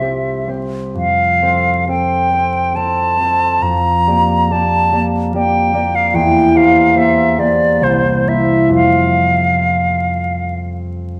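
A serene, lyrical romantic classical duo in 3/4 and F major, this fragment of a longer piece drifts with rubato between 61 and 76 BPM. A close-miked silver concert flute carries the melody up front with a pure, bright tone, gentle vibrato and soft attacks, while a thumb-plucked concert harp supplies ringing, warm accompaniment through chords that settle from C onto F and back to F at 8.7 seconds. A wet recital hall reverb and vinyl crackle surround the pair, and the flute falls silent at 10.6 seconds, leaving the harp to sound until 11.2 seconds.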